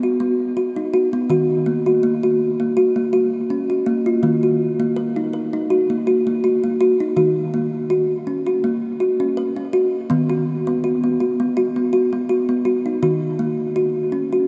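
Drenched in a huge ambient reverb with a 7.5-second tail, this dreamy, meditative world recording is cut from a longer piece and sits in Eb minor at 82 BPM in 4/4 with a light swing. A solo kalimba carries the entire 14.5 seconds, its woody, dark, thumb-plucked notes short and smooth, sitting up front and trailed by analog delay across a range from Eb3 to Bb4. The hypnotic harmony moves from B to Ebm, then through Gb/Eb and B/D# before settling back on Ebm, with a new section beginning at 4.2 seconds.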